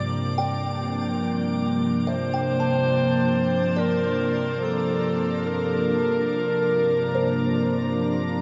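Melancholic and spacious, this ambient fragment is cut from a longer piece and rests on a single Gm7 chord in a steady 4/4. A soft, organ-like pad sits up front with pure, calm sustained chords, its slow attack, long release and ensemble chorus giving it a gently moving, unison body. Over it a vintage, classical-style clarinet carries the solo melody with a touch of delay, falling silent at 8.0 s while the other parts ring on to 8.4 s. In the background a woody, hollow kalimba plucks mellow, airy arpeggios through its own delay, and a bright, glassy harmonics texture drifts high above with shifting overtones and chorus. The dark, warm production is bathed in a long, wet shimmer reverb that turns the whole passage into a hazy, suspended space.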